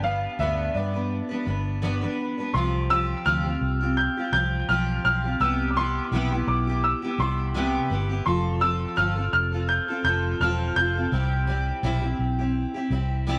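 Heartfelt and easy-going, this short acoustic pop excerpt at 84 BPM with a light sixteenth-note swing pairs a dark, woody upright piano melody carrying tape echo over a double-tracked, full-bodied picked steel-string acoustic guitar with finger squeak and a round, punchy, foam-muted vintage electric bass, all set in a small room with echo chamber reverb as the chords move from G through Fsus2/C, Cmaj7 and F to C.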